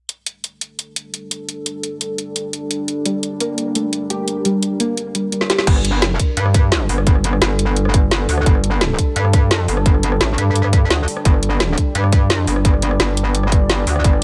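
Dark and tense, this cut from a longer technical drum and bass piece opens with a layered, up-front drum kit of woody snare and metallic hats, joined at 1.1 s by a deep, detuned ambient pad pumping beneath chorus and reverb, and then by a soft, round pluck arpeggio with delay from 3.1 s, before a drum fill at 5.4 s leads into a drop at 5.7 s with a tight electronic kick and an aggressive, saturated FM wobble bass.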